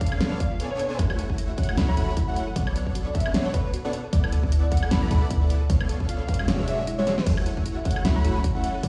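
A punchy, up-front electronic kick and a warm, boomy 808-style bass drive this lush, emotional future bass excerpt in F# minor at 153 BPM. The pulse is half-time, with a 56% swing on the 16ths. A huge, thick supersaw riff pumps against the kick through sidechain, while an airy, dreamy lead carries the melody with chorus and dub echo. A round, tine-like pluck in the thumb-piano style plays gentle arpeggios in the background. The big-room drum kit adds a huge snare, hi-hat, crash and woodblock. The chords move from C#7b9b13 through F#m7, Bm9, D69 and E13 before returning to F#m7 at 7.3 seconds. The kick drops out just before then, and a drum fill lands at 7.1 seconds. A shimmering, ethereal pad enters very quietly at 8.0 seconds, and the mix sits in large studio reverb, played on a big sound system in a bare room.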